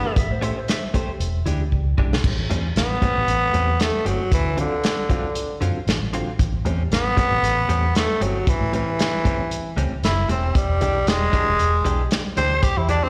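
Rollicking and soulful, this straight-eighth soul blues opens with a raspy, gritty tenor saxophone carrying the melody with slapback echo, while a clean, compressed, direct-recorded electric guitar adds picked stabs colored by harmonic tremolo and slapback echo, and a twangy, slightly broken-up guitar through a small old amp plays a brief second line from 0.2 to 0.9 s. A dark, foam-muted fingered bass and an up-front soul drum kit with tight kick and dark cymbals roll through A7#9, E7#9 and D7#9 changes, and a drum fill at 1.7 s leads into the tenor saxophone's solo at 2.2 s. The sound is that of a live gig heard through the venue's PA, with recital hall reverb.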